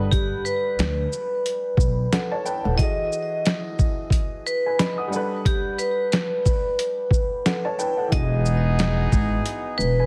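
Boom-bap hip-hop at 90 BPM in 4/4 with a swung sixteenth feel, this short cut from a longer piece carries a nostalgic, soulful mood over chords moving between Gmaj9 and Emaj9. A gritty, pitched-down sampler-style drum kit sits up front with a thumpy kick, a medium-tuned snare, hi-hat and shaker, while a woody, growly pizzicato upright bass plays the low end, dropping out at 2.8 seconds and returning at 8.1 seconds. Beneath them, a dark, mellow upright piano comps quietly, its audible action noise lending an intimate, vintage character. A bright vibraphone struck with hard mallets carries the melody, its metallic ring shaded by slow motor vibrato and a touch of delay. At 8.1 seconds a tight, close-miked trumpet section joins with clear, jazz-style stabs and light vibrato. The whole mix sits in studio reverb with a heavily compressed, radio-like sound.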